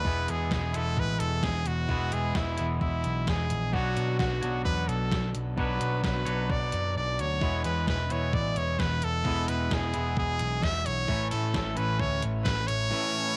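Indie rock at 130 BPM in a straight 4/4, wistful and jangly, with a brilliant, forceful trumpet up front carrying a vibrato-laced pop melody over a twangy clean guitar bathed in spring reverb and a crunchy overdriven guitar with subtle chorus sitting in the background. A growly, punchy picked bass and a gated 80s digital drum machine with a thumpy kick, overdriven gated-reverb snare and hi-hat drive the chords from E through Bmadd9 to A, with the kick and snare dropping out briefly at 7.0 seconds. This is a short excerpt cut from a longer piece, set in light reverb.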